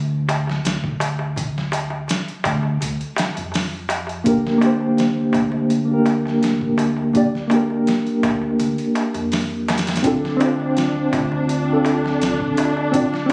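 Captured on a phone in the room, this brooding trip hop fragment sounds close and fairly dry, with a touch of studio reverb and compression holding it together. It moves at 83 BPM in a straight 4/4 in D minor, opening on a woody, gut-strung pizzicato upright bass with tube saturation, soon joined by a gritty, pitched-down sampler-style drum kit whose thumpy kick, medium-tuned snare and hi-hat carry an overdriven edge. A crisp metal-shelled darbuka played with soft hands adds dry acoustic texture underneath. At 4.2 seconds a reedy, mellow electric piano arrives up front, the loudest part, its fast tremolo and tape echo colouring the melancholic chords as the harmony shifts from Dm to Gm/D. At 10.0 seconds a lush bowed string section enters on a sustained D4 with vibrato and 12-bit sampler grit, settling the fragment onto Dm7 before it cuts off.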